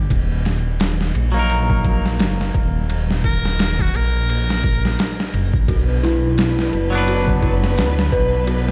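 Played back over a big sound system in a bare stone room, this cinematic, melancholic trip hop excerpt carries a cavernous, echoing ambience around its instruments. A deep, rumbling detuned saw bass sits up front from the first moment, its beating, saturated tone anchoring a dark Ebm mood, while a gritty, pitched-down boom bap drum kit with a thumpy kick, medium-tuned snare and ride cymbal lopes along with a lazy swing, overdriven and compressed. A clean, twangy electric guitar enters at 1.3 seconds, its bright picked notes shimmering through harmonic tremolo and tape echo. At 3.3 seconds a muted trumpet with a metal mute offers a brief, buzzy, thin solo phrase with light vibrato, trailed by tape echo. As the harmony shifts to Bm at 5.7 seconds, a smooth, bowed studio string section enters with sustained chords, joined by an eerie, inharmonic FM synth bell whose warbling arpeggios drift through chorus, phaser and tape echo.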